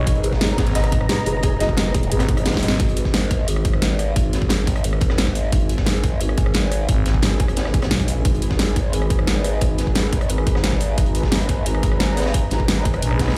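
A sweeping, detuned sawtooth pad and a thick FM bass open this dark technical drum and bass passage at full drop intensity, while a felt-muted upright piano plays soft, intimate arpeggios in the background, its action noise audible beneath a dub echo. A drum fill at 2.5 seconds and a band accent close that opening stretch, after which the pad and piano fall away and a growling, wobbling bass, saturated through a formant filter and overdrive, carries on at the front of the mix, as it has since the start. The drums stack a tight, tape-warm electronic kick, a dubstep kit with a huge snare and metallic hats, and a gritty, rolled-off breakbeat kit with a high-tuned snare sitting in the background. A deep, moody ambient pad with a sub octave and long release sits underneath throughout, pumping like the other sidechained parts. The FM bass returns in short bursts, and a faint electronic swell rises at 13.2 seconds as this mechanical, tense section is cut off, all of it played on a big sound system in a bare room and ringing in a large studio reverb.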